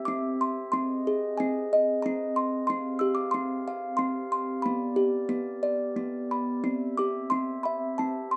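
In a 3/4 at 92 BPM with a rubato feel, this tender, gentle lullaby in C major is a brief fragment of a longer children's piece, drifting from C through Ab, Fsus2 and G before returning to C as a new section begins at 6.6 seconds. A delicate, tinkling music box with a mellow, large-box sound carries the melody up front throughout, while a glassy, ethereal glass harmonica, also up front, holds sustained chords alongside it, its slow attack and dark, pure tone giving a smooth bed to the plucked notes. The close, detailed recording with light reverb keeps both instruments intimate and clear.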